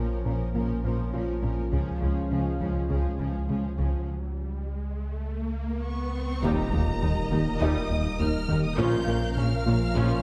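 A vast, tense hybrid orchestral and electronic film cue at 102 BPM opens on lush, vibrato-rich violins carrying the melody over a second violin line, violas, a mellow detuned analog pad, a woody mallet-like synth pluck playing arpeggios, a rubbery square-wave bass riff, quiet cellos and double basses, a deep round sub bass, and a felt-muted upright piano with audible action noise, moving from Bbm to Db until an electronic riser from 3.9 s and a break lead to an impact at 6.4 s, where a dark French horn section and clear trombones add sustained chords on Eb and a dark tuba joins the bass before the harmony returns to Bbm, all in a dark production wrapped in wet scoring-stage reverb.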